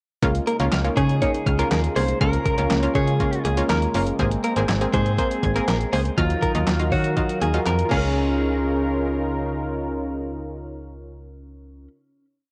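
Synth-pop at 121 BPM in Db major, wistful yet bright, built as a short chorus that closes on a final hit at 8.2 seconds. Snappy, metallic FM slap bass pulses up front in eighths under syncopated chords from a detuned sawtooth pluck, a brassy pad sustained in the background with vibrato, and a very quiet arpeggiated pluck with a noise layer, while a clean 12-bit drum machine with a thumpy kick and handclaps drives a straight beat until a fill leads into the end. Two clean, compressed, direct-recorded electric guitars carry a motif-based melody and a short hook, the hook passing through analog delay, and the whole home cassette recording has a tape-softened, lightly reverberant sheen.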